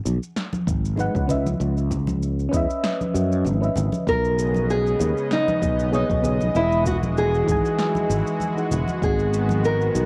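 Smooth and blissful, this sunset chillout excerpt in B major moves at 97 BPM in 4/4, with a light swing on the sixteenths and chords drifting from G#m7 through C#m9, B69 and Emaj9 before returning to G#m7. A growly, bright fretless electric bass sits up front with a lush chorus, while an overdriven electronic shaker and punchy snare run throughout alongside hard-handed congas tucked in the background. A deep, overdriven electronic kick enters at 0.7 seconds, and a round, vintage FM electric piano with a warbling chorus and tape echo adds soft, decaying chords from 1.0 seconds. At 4.1 seconds a boxy, fingerpicked nylon-string guitar takes the melody up front, colored by cassette grain and tape echo, as a thick, detuned sawtooth unison pad with slow attack and long release fills in sustained chords. The whole excerpt has a homespun cassette character, bathed in a moderate spring reverb.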